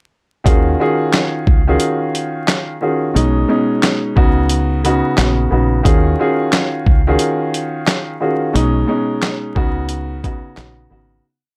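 A dusty, sampler-style soul drum kit sits up front in this reflective, gritty boom-bap hip-hop piece, its thumpy kick and medium-tuned snare layered with handclaps, over a sparse, compressed beat with quarter-note hi-hats and a swung 16th-note feel. A dark upright piano enters at 0.4 seconds with chopped, woody chords repeated like a sampled loop, its mellow, vintage tone shaped by high- and low-pass filtering. Beneath it, a deep dub fingered electric bass plays a round, punchy looped line, foam-muted and thickened by tube saturation. The harmony cycles through minor eleventh, six-nine and suspended ninth chords, giving the groove a brooding, jazzy colour. The dry, hardware-recorded sound carries a layer of vinyl crackle, and the whole piece fades out from 8.5 seconds, with the drums dropping away at 10.8 seconds.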